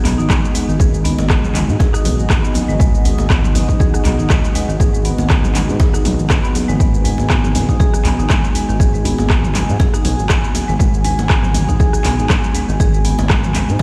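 A swung sixteenth-note groove in four drives this earthy, spiritual afro house excerpt, built on a punchy, overdriven electronic kick that enters at 0.3 seconds and an overdriven deep house kit of handclaps, metallic hi-hats, rim click, shaker and toms. Very quiet hand percussion sits beneath: a deep djembe struck with hard hands in a live room, and close, ringing congas. A smooth, wave-folded synth bass with vibrato and portamento glides through the low end, pumping against the kick, while a woody marimba with rosewood bars plays arpeggios through tape echo. A detuned, moody analog pad with a sub octave holds sustained chords on a single G#m7, its slow attack and long release coloured by chorus, vintage 12-bit sampler grit and sidechain pumping. The whole mix rings out as if played on a big sound system in a bare stone room, with light digital ambience around it.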